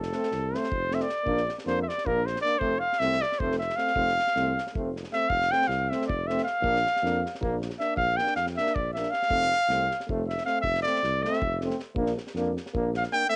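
Wild and exuberant, this Balkan brass band fragment in 7/8 puts a lightly vibrato-tinged trumpet up front for a classical-style solo, backed by a soft-attack euphonium, a distant, roomy French horn in the background, a punchy, close-miked tuba on bass and a dry acoustic drum kit with a high-tuned snare and tight kick, all captured as a lo-fi cassette home recording with light small-room reverb.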